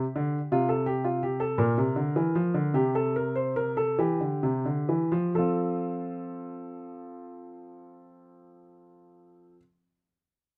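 Classical, baroque-style two-part invention for solo baby grand piano in a straight 12/8, joyful yet stately, cut from a longer piece. The piano's warm, smooth, vintage tone sits up front, captured by close, detailed microphones with light reverb, and it plays from the start until 9.6 seconds. The opening passage slows down over its first 5.3 seconds as the harmony moves from C7sus4 to C7 before settling on F.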